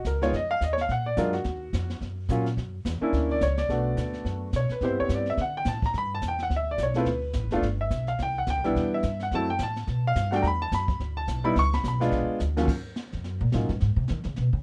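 A warm, vintage-toned baby grand piano leads this moody, cool jazz piano trio excerpt, carrying the melody up front from the start at a brisk 214 BPM with a swung eighth-note feel in 4/4. Beginning in Eb minor and moving to B minor at 3.7 s, the harmony runs through rich extended chords such as Bb7b13, Gb7b13, F#m7b5 and A#7b9. A woody, dark pizzicato upright bass on steel strings sits close beside the piano, then takes a short solo from 12.7 s, with the piano dropping out shortly after at 13.7 s. Brushes on a jazz kit with dark cymbals, a medium-tuned snare and a punchy kick keep a smooth, rolled-off backdrop, adding a fill at 12.4 s. Light reverb and a rough home-demo mix give the trio an intimate, unpolished character.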